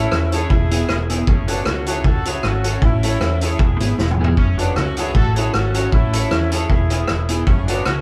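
Ska with a mischievous, driving mood and a light swing, this short excerpt sets a band playing live in one room within a wet studio ambience. A punchy horn section carries the melody with a light vibrato and a dub echo, sitting present over the band. A bright, picked clean electric guitar with spring reverb supplies the accompaniment, while a dark, woody upright piano adds stabs from the background. A round, hollow-body fingered electric bass anchors the low end, and a second clean guitar, twangy and compressed, plays a very quiet riff deep in its register. The vintage drum kit sits up front with a tight kick, medium-tuned snare, rim clicks, hi-hat and toms, rolling through a drum fill from 4.0 to 4.4 seconds as the chords cycle between E, F#m and A.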